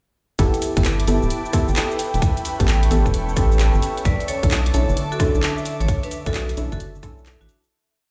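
UK garage in a two-step groove at 131 BPM in B minor, bouncy and skippy, moving through G6/9, A9 and Bm11 chords before fading out from 5.3 seconds. A tight layered kick and a garage kit of swung hats, rim clicks, shaker and handclaps drive a rubbery, hollow square bass sitting up front, while deep, mellow chord stabs with chorus and dub echo punctuate sustained, smooth analog pad chords and an ethereal, airy pad, both pumping from sidechain. At 4.1 seconds a bright, metallic vibraphone with hard mallets enters with a repeating riff in thirds and sixths, roughened by 12-bit sampler grit and dub echo, all ringing through a bare stone room as if over a big sound system.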